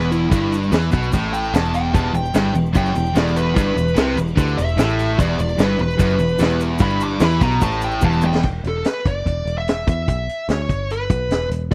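A dry, close-miked studio sound with a 1970s character frames this driving, swaggering classic rock excerpt in E minor at 148 BPM. A dark, distorted lead guitar with slapback echo solos bluesily over a stack of riffing guitars: a bright, overdriven electric, a hollow-bodied semi-hollow sitting in the background, and, from about 2.0 seconds, a very quiet double-tracked biting guitar. A foam-muted electric bass gives a round, punchy low end, while a vintage acoustic kit with dark cymbals, a high-tuned snare, a punchy kick and a rolled-off top drives the groove alongside a grainy tube shaker tucked in the background. A mellow, reedy electric piano adds clean accompaniment through its own built-in speakers. A drum fill ends the solo passage at 8.4 seconds, where the Em harmony gives way to an E5 power chord and the riffing guitars, shaker and piano drop out, leaving lead guitar, bass and drums to carry on until 11.7 seconds.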